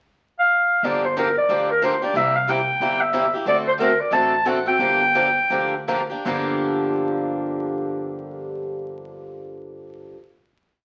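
A raspy, growling clarinet with light vibrato and scooped notes enters at 0.4 s in this short, bittersweet gypsy-jazz piece, playing a call-phrase melody in G dorian before falling silent at 5.8 s. Two picked acoustic guitars swing beneath it at 155-184 BPM: one bright and up front in four-to-the-bar rhythm, with short accents on two and four, and a second with fresh strings and audible finger squeak. A woody, thumpy upright bass plays a two-beat root-and-fifth line as the tune slows and settles onto a long final chord from 6.3 s, all heard through roomy reverb and the crackle of a very old 78 rpm record.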